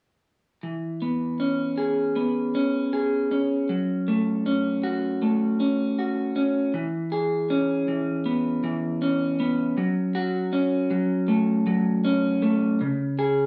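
A reverberant, roomy sound frames this short rock excerpt, with a band-in-one-room feel and a wet studio reverb. A single electric guitar through a small old amp sits up front, its tone slightly broken-up and picked in arpeggios that cycle through E6 and F#m before settling on C#5 at 12.8 seconds. The mood is cinematic and euphoric, with a second section beginning at 6.7 seconds that restates the opening chords.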